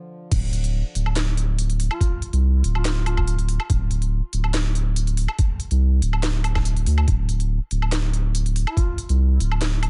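Cavernous and meditative, this deep dubstep cut drops in at 0.3 seconds with a half-time feel, pairing a deep, thick, saturated sine sub bass and a gritty, pitched-down, thumpy sampler kick up front with a tape-warm garage kit of cracking snare, crisp hats, handclaps, crash and woodblock re-recorded in a large room, while a mellow folk-style duduk with scooped notes and dub echo appears briefly around 1.9 and 8.7 seconds.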